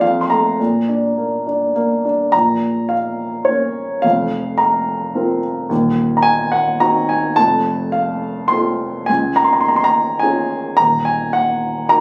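Captured on a phone in the room, the recording carries a club-like reverb and noticeable compression, with the top end rolled off to leave a muffled, dusky sound. This is a moody, brooding fragment of lyrical classical solo piano in triple metre, cut from a longer piece and played with a flexible rubato feel. The baby grand sits up front, its tone dark, mellow and intimate, with audible action noise and a short sustain that keeps each chord natural and close. After a brief opening, a new passage begins at 2.3 s and settles into minor-key harmony, moving through suspended, diminished and major colours before closing on a minor chord at 10.8 s. The range stretches from deep bass notes to the upper middle of the keyboard, giving the brief 12-second fragment a shadowed, introspective weight.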